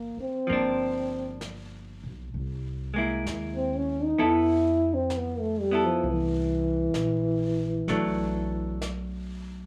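A breathy, whispered trombone carries the melody up front with light vibrato and a soft attack over clean, picked hollow-body guitar, woody pizzicato upright bass and brushed drums entering at 0.5 seconds, in a romantic, late-night jazz ballad at 65 BPM with a swung feel, moving through Gm7, C7alt, Fmaj7#11 and Bm7 in this roughly 9.7-second excerpt from a rough home demo mix.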